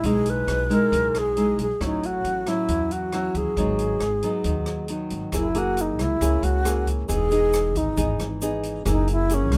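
A smooth, melancholic bossa nova in a straight 4/4 opens with everything but the percussion sounding at once: a breathy alto flute carries the melody up front, with soft attacks and vibrato. Beside it, a fingerpicked nylon-string guitar plays classical-style accompaniment, also up front, its tone warm and marked by the occasional finger squeak. An upright bass plucked on gut strings gives a woody, thumpy low end. An open jazz kit, recorded naturally in a small room, keeps time quietly on hi-hat, rim click and a boomy kick. At 5.3 seconds the music moves into a second section as a grainy tube shaker joins, close and dry in the background, while the harmony passes from F#9 through Emaj7 and back to F#9. Light reverb surrounds the ensemble, and the passage is cut from a longer piece, ending at 9.6 seconds.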